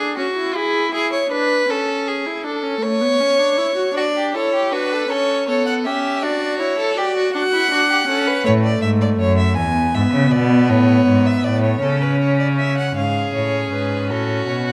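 Stately and joyful, this baroque-style fugue for string quartet moves at a measured 53 BPM in 6/8 and D major, cut from a longer piece. The intimate, airy-bowed viola and a focused second violin open together, the melody violin with its smooth top enters at 4.0 seconds, and the rich cello arrives at 8.5 seconds with soft-attack portamento as the second violin drops out, only to return at 13.0 seconds. Each bowed player sits up front in a moderate recital-hall reverb.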